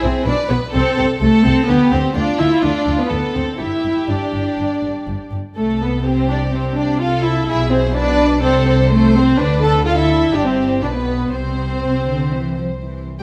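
A quick 4/4 pulse at 125 BPM, played with rubato, carries this spirited, graceful classical-period string orchestra passage in C major, where a warm first violin section sings the melody alongside a distant, woody second violin line, an up-front dark viola accompaniment, a background cello and a double bass bass part, all bowed sul tasto in a concert hall with moderate reverb and moving through chords such as Am/C, Dm, G and C across its 13.2 seconds.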